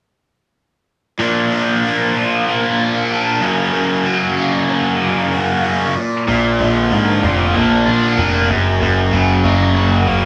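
A raw, overdriven garage guitar with a phaser and a tight, distorted electric guitar pick out a bright, sunny, driving rock riff up front over Bb and Gb chords, joined at 6.3 seconds by a concert grand piano carrying a deep, natural bass line, the whole cut from a longer piece set in a moderate large-studio reverb.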